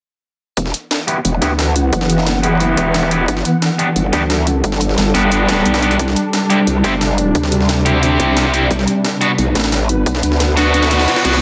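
At 0.6 seconds a growling, saturated growl bass and a layered drum setup of a gritty, pitched-up breakbeat sampler kit, overdriven bright electronic hi-hats and a tight, background kick launch this mechanical, aggressive stretch of dark technical drum and bass in E minor at 177 BPM, cut from a longer piece. A swarming, detuned drone of sustained chords with slow attack and granular texture arrives at 1.3 seconds and moves through Em, G, C and Bm, while a bright, picked distorted electric guitar plays up-front stabs under a filter sweep, low-pass filter and digital delay, with both bass and drone pumping from sidechain. The kick drops out at 10.7 seconds as a reverse cymbal enters in the background to close the passage in light reverb.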